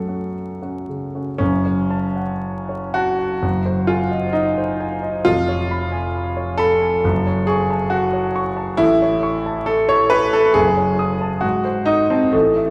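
A warm, intimate concert grand piano sits up front with deep bass and audible action noise in this passionate, bittersweet romantic character piece in F# minor, played solo with rubato at 55-70 BPM in 2/4, its chords turning through G#7 and C#7 back to F# minor before darkening toward G#7b9 at 11.4 seconds, all heard within a lush concert hall reverb, under a vinyl crackle, in a brief fragment cut from a longer work.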